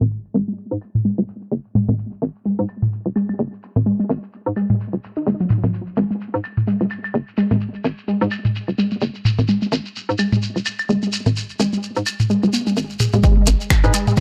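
Hypnotic and clinical, this minimal techno excerpt runs at 128 BPM in 4/4 with a 58% swing on the sixteenths, tuned to A4 = 435 Hz. A hollow, bouncy FM bass knocks along from the start with sidechain pumping and a high-pass filter, joined by up-front, tape-warm electronic toms and claves and a grainy, close shekere sitting low in the mix. From 0.3 s a juicy, squelchy blip pluck carries the riff, its detuned square and sawtooth layers thickened by chorus, tape echo and pumping while a long filter sweep runs over it until 13.2 s. At that point the harmony lands on G# minor and a punchy, layered electronic kick arrives up front, followed at 13.5 s by an overdriven click kit of clicky hats and finger snaps re-recorded in a small room. A brief percussive organ stab with chorus flickers in at the very end. The mix is echo-heavy and darkened by a low-pass filter, with moderate spring reverb giving the space a short 1.1-second tail.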